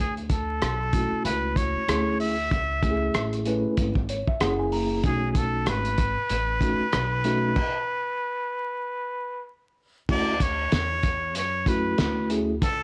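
The recording is dry and gritty, with vinyl crackle and a touch of studio reverb, giving this mellow, nocturnal slice of jazz-hop a late-night, hardware-worn feel. A cloth-damped drum kit enters at 0.2 s with a thuddy, muffled tone, a fat snare, a tight kick, rim clicks, hi-hat and dark crash cymbals, all swung and sitting up front. Underneath, a woody, growly pizzicato upright bass adds thump through tube saturation, while a tine electric piano supplies soft accompaniment over Dmaj7, F#m9, F#9, B7 and B9 chords, adding a fill from 3.8 to 5.0 s. Out front, a close-miked trumpet with a straight mute plays the solo melody with a nasal, breathy, whispered quality, a soft attack and light vibrato. A stop from 7.6 to 10.1 s suspends the harmony before the music returns to Dmaj7 at 10.1 s in a new section, and the clip is cut from a longer piece.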